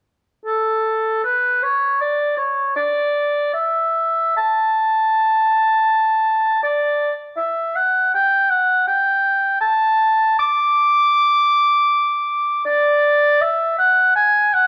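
A classical, baroque-style fantasia for unaccompanied oboe, this passage from a longer piece moves with a dance-like, flowing character and a free, rubato sense of time in 4/4. The warm, roomy oboe plays alone from 0.5 s to 14.7 s, sitting up front while spanning A4 to D6. A moderate recital-hall reverb and a dark production give the sound a soft glow.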